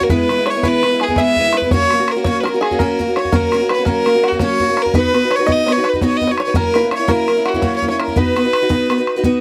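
Bright and lively, this short cut from a longer Celtic folk piece moves as a slip jig in 9/8 with a straight feel. A single fiddle carries the melody up front, its rich, earthy tone close to the ear with an airy edge to the bow. Beneath it, a bluegrass banjo played with fingerpicks adds a twangy, percussive second line from the background. A picked steel-string parlour guitar sits up front in the accompaniment, boxy in character with audible finger squeak, moving through a harmony of E, F#, B and F#7. The bodhran gives an open, boomy pulse with a compressed, saturated weight, and all four parts play together throughout the 9.4-second span under light reverb.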